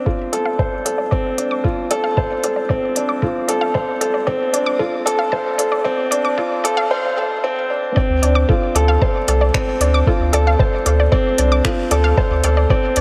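A straight 4/4 pulse at 114 BPM drives this hypnotic, intimate piano-and-strings electronica fragment in D minor, tuned to A4 = 435 Hz and resting on a Dm7 chord. A muffled, pitched-down kick thumps up front beside a crisp, produced kit of finger snaps and hi-hats, while a round sine sub bass pumps under sidechain and a felt-muted upright piano, its action noise audible, repeats a mellow riff through digital delay. A bright, detuned sawtooth unison pluck spins warbling arpeggios whose filter sweep builds to the drop at 8.0 seconds, and a lush hall reverb surrounds the mix.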